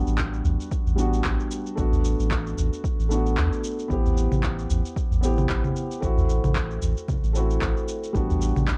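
This short excerpt from a longer piece has the hushed, lightly reverberant sound of a home recording on cassette, with a meditative, hypnotic organic downtempo groove and a gentle swing in its sixteenths. Up front sits a felt-muted upright piano, soft, mellow and intimate, with its action noise audible; it plays an accompaniment part colored by tape echo, a plate reverb and sidechain pumping. Beneath it a deep, round sine sub bass holds sustained notes that pump in the same way. An overdriven set of electronic shaker, handclaps and congas, re-recorded in a small room, rides alongside a layered, punchy electronic kick set back in the mix. A small, close and dry udu joins at 0.4 seconds and drops out at 8.4 seconds, while the harmony moves from A13sus4 through D6/A, Am7 and Am6 before returning to A13sus4.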